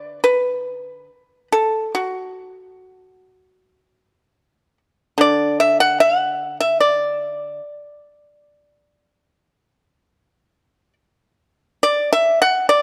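Elegant and pastoral, this short passage cut from a longer traditional Chinese piece features a solo pipa played with fingerpicks, its dry, percussive, up-front tone ranging from D3 to F#5 in the D gong mode, moving at an unhurried 73 BPM in 4/4 with a freely breathing rubato feel, captured by close, detailed microphones with a touch of light reverb.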